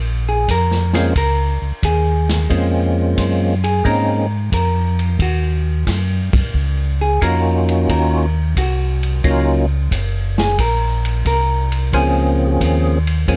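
A dark, clean, picked hollow-body electric guitar takes the spotlight from 0.3 s in this late-night, bluesy soul jazz organ trio excerpt, swinging at 89 BPM in Bb minor over Bbm9 and Ebm7, with a round, lightly overdriven tonewheel organ bass line turning through a slow rotary speaker, a fat, percussive second organ carrying the up-front melody with third-harmonic percussion and key click, and a natural big-band drum kit with a punchy kick, medium-tuned snare, hi-hat and ride, all captured in a dry, dark, warm production.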